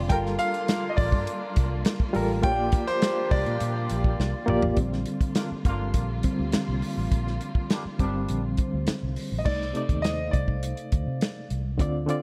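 A straight 4/4 groove at 103 BPM from an up-front, dry soul drum kit with dark cymbals and a tight kick drives this bittersweet, cinematic 1970s-style soul excerpt, where a round, foam-muted electric bass and a barky, lightly overdriven reed electric piano with fast tremolo carry the Gm9 and Bb6 chords, a clear concert grand piano melody with tape echo and bright, tight trombone section stabs enter at 0.1 s, distant bowed strings with portamento sustain chords until 9.4 s, a ringing vibraphone glints in the background, and after a drum fill the electric piano takes a solo from 4.8 s before the grand piano returns over a closing Cm69.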